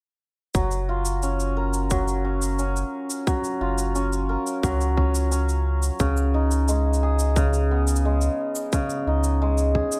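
A shimmering hammered dulcimer rings out up front with delayed arpeggios in F# major, set over a deep, round sine sub bass in this hopeful folktronica excerpt at 88 BPM in a straight 4/4. A tight, overdriven electronic kick and a gritty, overdriven cabasa, both carrying the sound of a large room, drive the groove, while the mix itself stays dry. The harmony rests on F#maj7 before moving to C#sus2 at 6.0 seconds.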